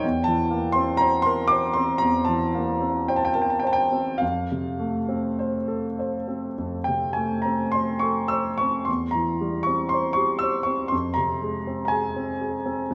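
Classical romantic nocturne for solo piano, mournful and yearning, unfolding in a slow 4/4 with a free, rubato feel. A warm grand piano sits present and up front across its range from E2 to E6, its long sustain blooming into the wet reverb of a recital hall, while the harmony drifts from C7/E through F and C/E to a darkening F minor at 10.9 seconds. Tuned slightly high at A4 = 444 Hz, this brief passage is cut from a longer piece.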